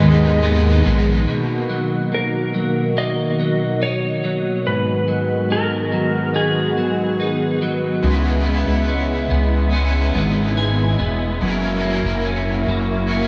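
In a straight 4/4 pulse, this blissful, floating dream pop excerpt drifts through a moderate plate reverb: a lush, nasal pad of detuned sawtooth chords and compressed, picked clean electric guitar arpeggios washed in ensemble chorus and diffuse delay run throughout, a dark, compressed lap steel sings a fingerpicked slide melody until 7.6 s, and a fat, saturated analog bass with a filter sweep and a bright, overdriven stack guitar with harmonic tremolo sound briefly at the start before returning at 8.0 s.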